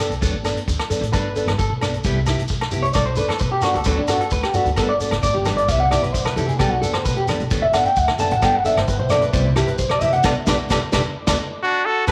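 A picked electric guitar at the edge of break-up, compressed and up front with a slapback echo, plays arpeggios from 1.1 seconds across this joyful, carefree highlife excerpt in G major at 132 BPM in a straight 4/4. Beneath it, a picked steel-string acoustic guitar with audible finger squeak picks out an accompaniment while a woody, thumpy upright bass on gut strings plays pizzicato, and a vintage kit played with brushes gives a punchy kick, dark cymbals and a rolled-off top. A grainy, mellow shekere and close, dry agogo bells ring in the background, joined from 5.1 seconds by very quiet, low-tuned congas with a thick skin. The harmony cycles through D6, Gadd9, Cmaj7 and Gadd9/B, and a band accent arrives near the end, where a clear, punchy trumpet with vibrato takes the melody at 11.6 seconds over a bright, roomy second trumpet. A moderate spring reverb gives the whole band a lively sheen.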